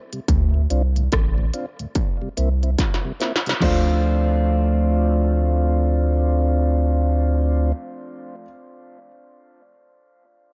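Dub reggae in D minor at 72 BPM with a swung 16th feel, heavy and spacious, moving from Dm7 to C7 and back to Dm7 in this short cut from a longer piece. A dark, key-clicking tonewheel organ with slow rotary speaker and dub echo plays alongside a round, deep sub bass up front. An electronic drum kit with a distorted kick, clanging snare and smooth hats plays a break with a fill from 2.8 seconds until it stops at 3.9 seconds. At 3.6 seconds a clean, fingered electric guitar with warbly pitch drift and dub echo enters alongside very quiet stabs from a worn, woody, slightly detuned upright piano, all set in light digital ambience.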